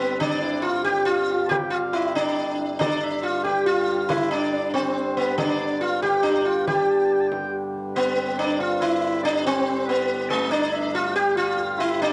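A buzzing, plectrum-plucked sitar leads this festive, rustic medieval dance in 6/8, its shimmering sympathetic strings sitting up front. A distant, vibrato-laden shawm with scooped notes plays a folk-style second line above it, while a ringing hammered dulcimer shares the sitar's range and a reedy, breathing pedal harmonium holds a drone beneath, all four carrying a cassette tape colour. A small frame drum played with soft hands joins from 0.2 to 7.9 seconds in this home-recorded excerpt, and a moderate spring reverb adds a homely room sound.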